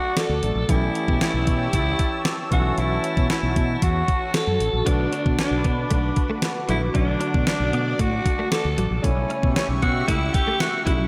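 A raspy, gritty alto saxophone carries the melody through delay at the front of this moody, nostalgic 1980s-style pop fragment at 115 BPM, over a thumpy, fat-snared 12-bit drum machine, a round, dark fretless bass, an intimate grand piano with audible action noise sitting in the background under lush chorus, a thick, detuned sawtooth pad with chorus and phaser, and a very quiet, clean picked electric guitar riff entering at 4.9 s, all set in a dreamy, reverb-soaked hall.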